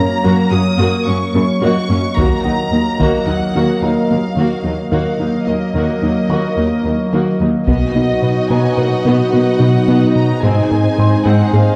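A cinematic hybrid of orchestral and electronic film score in Eb minor, vast and brooding, moving at 109 BPM in 5/4. Over a hollow, airy pad with chorus, a soft round pluck arpeggiating in the background and a cello section carrying the bass, a lush, distant violin section sings the melody while a background viola section accompanies. A felt-muted upright piano with audible action noise and digital delay enters at 1.6 seconds, and heavy, dry taiko hits arrive at 2.2 and 7.7 seconds, the latter joined by a second focused violin line, loose French horn chords and a nasal sawtooth synth bass riff, all bathed in a dark scoring-stage reverb.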